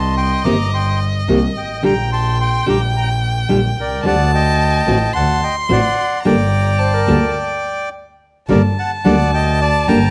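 Melancholic and sultry, this rubato tango fragment puts a reedy, dry bandoneon melody up front over a biting, bowed double bass and a bright, fingerpicked nylon-string guitar, while a violin with vibrato and portamento traces a second line and a mellow, airy flute slips in at 6.8 seconds just before a brief stop at 7.4 seconds, all captured through close, detailed microphones in a large studio with moderate reverb.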